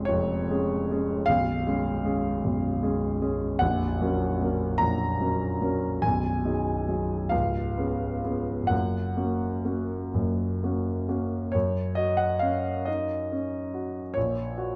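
Classical romantic nocturne for solo piano in F# major, tender and nostalgic, drifting in a rubato 6/8 at a slow 42-52 BPM. A smooth, vintage grand piano sits up front in a moderate recital-hall reverb, close and detailed, and moves through C#7 and G#m7 colours to settle on F# before the passage, cut from a longer piece, ends at 14.8 seconds.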